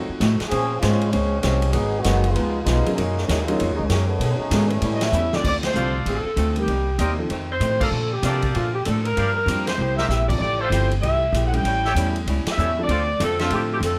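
An excerpt of dramatic, brassy big band swing opens with a cup-muted, veiled trombone section carrying the line over a dark hollow-body archtop guitar, an intimate concert grand with audible action noise, a woody, thumpy upright bass up front and a distant, roomy drum kit with boomy kick, until a mellow saxophone section takes the melody at 4.9 seconds, joined by clear, tight trumpet stabs from 5.8 seconds, band accents and brief drum fills, all in light reverb.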